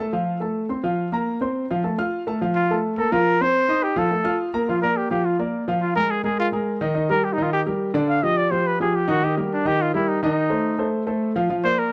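Sophisticated and sunny, this jazz excerpt moves at a brisk 211 BPM in a straight 4/4 feel. A grand piano opens alone as accompaniment, its intimate tone carrying audible action noise and long sustain as it moves through F-based harmonies such as Fsus4 and F9. The trumpet enters at 2.5 seconds with a smooth top, light vibrato and scooped notes, and from 4.7 seconds it takes a solo over a settled Bb major passage that touches Ebmaj7 and G5 before reaching F7. Both instruments sit up front with a warm character, the piano sounding natural. The sound is a dry, close recording in a small room with a 1970s studio flavor, and the passage is cut from a longer piece, stopping at 11.9 seconds.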